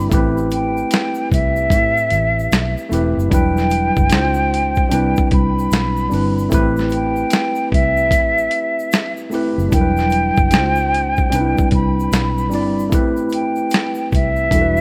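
A hazy, nostalgic lo-fi hip hop sound with light reverb opens this short cut from a longer piece, where a breathy, unsteady concert flute with vibrato carries the melody up front through a low-pass filter and tape echo. Beneath it, a worn, slightly out-of-tune tine electric piano with cassette-tape colour and a low-pass filter plays chords moving from Am7 through Em9, C#maj9 and Cmaj9. A dark, foam-muted fingered electric bass and a gritty, pitched-down boom bap sampler-style kit with a thumpy kick and medium-tuned snare hold a swung groove, while a grainy egg shaker sits in the background from 0.1 seconds.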